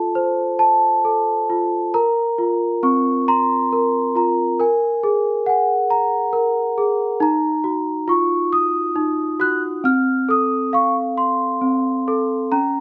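Close, detailed microphones and a light reverb place a large celesta up front, its bell-like, ringing tone carrying a vintage, band-limited sheen from hard felt hammers. This dreamy, gentle children's lullaby in Bb minor moves in a rubato 6/8 at about 45 BPM (dotted quarters), tuned to A4 = 438 Hz, with the celesta playing solo from 0.0 to 12.8 seconds across a range from C4 to Gb6. Cut from a longer piece, it drifts from F through Bbsus2, Gbadd9 and Ebmadd9 before settling back on F at 9.8 seconds.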